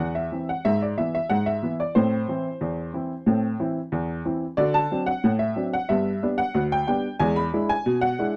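A straight 2/4 pulse at 92 BPM drives this lively, cheerful ragtime fragment, cut from a longer piece, played by a solo upright piano from 0.0 to 8.4 s across a span from D2 to B5. The piano sits up front with a clear, woody, slightly detuned character and short sustain, touched by light reverb. The harmony opens on a rootless A minor, moves through E/G# and back to A minor, then turns to D7, G and E7.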